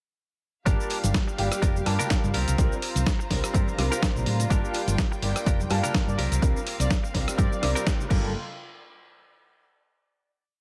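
A dry mix carries this nostalgic, sensual filtered disco house piece. A punchy, tape-warm electronic kick drives a four-on-the-floor pulse under a gritty sampler-style kit of shaker, snare, rim, hats and crash, while very quiet tambourine and congas add bright vintage colour. A round, dark hollow-body bass plays a funky syncopated line, a baby grand piano holds rootless chords with syncopated pushes through a phaser, a twangy, clean direct guitar picks a funk chord riff, and a lush, distant violin section sustains a pad, with these four parts pumping against the kick. At 6.1 seconds a fat, detuned analog synth brass enters in the background with chorus and digital delay, the band hits an accent at 7.9 seconds, and a final hit rings out from 8.3 seconds.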